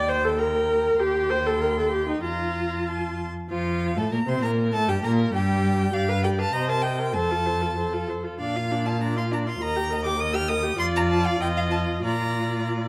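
A focused, up-front viola carries the accompaniment with vibrato and sits prominently in this short, graceful and lively passage from a quick classical-period movement for string quartet in Bb major, taken at 92-104 BPM in 2/4 with a rubato feel and tuned to A4 = 435 Hz. Above it, a smooth, even first violin sings the high melody while a more distant second violin plays a supporting line, and an up-front cello anchors the bass with a soft attack, expressive portamento and vibrato. The rich bowed tone of the four single players sits in a moderate recital hall reverb, with a brief opening section giving way at 3.5 s to a longer one that settles back on Bb by 12.1 s.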